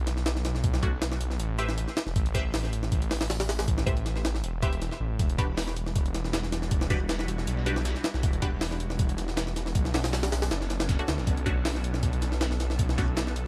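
Vinyl crackle and lossy digital artefacts coat this frenetic, atmospheric drum and bass fragment, where a pitched-up, gritty, tape-warm jungle sampler kit with a thumpy kick and medium-tuned snare sits up front beside a thick, beating, menacing detuned saw bass. Muted, deep dub chord stabs with a filter pluck, phaser and dub echo flicker through from 0.8 seconds, while a very quiet, dusty soul sampler kit slips in at 5.2 seconds. A silky, warbling string machine with ensemble chorus and 12-bit grit arrives in the background at 5.7 seconds, holding mellow minor-ninth chords.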